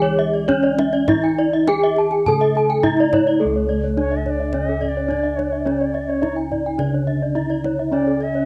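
A straight 4/4 pulse drives this ceremonial, shimmering Balinese gamelan excerpt. A dry, close-miked bronze metallophone struck with a wooden mallet carries the melody over the round, beating bass of bossed gongs, the deep hard-handed strikes of the kendang, a mellow padded-mallet metallophone accompaniment in the background, and two glittering horn-mallet metallophone arpeggio parts bathed in plate reverb, whose paired tuning gives off shimmering beats. At 4.0 s a reedy, tongued bansuri joins up front with an airy second line, all heard through the soft grain of a home cassette recording in a small room.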